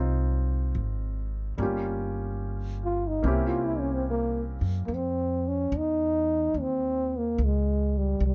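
Recorded close and dry with detailed microphones, this short, melancholic and intimate jazz ballad swings gently in 4/4, moving from Fm9 through Gm7b5 and C7b9 to Dbmaj9. A clear, natural baby grand piano and a woody pizzicato upright bass start together up front, and the piano drops out at 4.9 seconds. From 2.8 seconds a dark, breathy trombone takes the solo melody with light vibrato.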